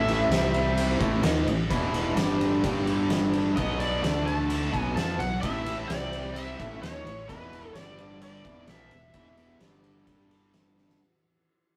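Gritty and driving, this short blues rock and southern rock power-trio excerpt at 129 BPM fades out over its 11 seconds as a cranked, double-tracked stack guitar pounds out an overdriven picked riff up front, a biting lead guitar carries the melody until 9.6 s, a growling fingered bass adds punchy overdriven low end, an oversized low-tuned drum kit with a fat snare, punchy kick and dark ride cymbal booms in a pumping stone room, and a very quiet, shouting tonewheel organ through a slow rotary speaker holds sustained chords and slips in brief fills, all captured as a rough rehearsal-room recording with saturated grit.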